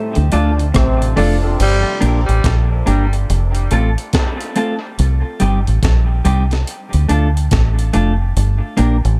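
Spacious and heavy, this short dub reggae cut moves at an unhurried swung pace, cut from a longer piece. It opens on a break in which a dark, smooth-topped trombone section drifts in the background with dub echo, while a very quiet hollow-body electric guitar plays a fingered riff and a clear concert grand piano adds open, echoing stabs. By 1.6 seconds those parts have dropped away, and a growling, raspy tenor saxophone lands a brief echoed note. Holding the whole length together are a round, punchy fingered bass, foam-muted and up front, and a gritty, compressed breakbeat kit with a thumpy kick, high-tuned snare, rim click, hi-hat and crash, its hits trailing dub echo. A clean, picked electric guitar carries the accompaniment through the chord changes from Gm to F, Cm and back toward Gm, also soaked in echo. The mix is echo-heavy with light reverb, leaving plenty of room around the deep low end.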